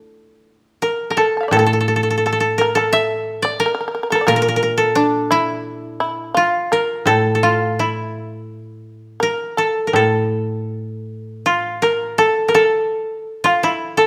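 Calm and austere, this brief passage of Japanese traditional chamber music unfolds with a free, rubato feel, cut from a longer piece. A bright, woody koto carries the melody from the very start, plucked with fingerpicks and sitting dry and up front in the mix. Just after it, at 0.8 seconds, a shamisen joins with a second line pitched above it, its plectrum-struck, buzzing, percussive tone held further back in the background. A second koto supplies a low, mellow accompaniment from 1.5 to 12.2 seconds, its rounded sound a foil to the brighter lead. The opening section gives way to a new one at 11.5 seconds, and the whole ensemble sits in a moderate recital hall reverb that lends the plucked strings a sense of space.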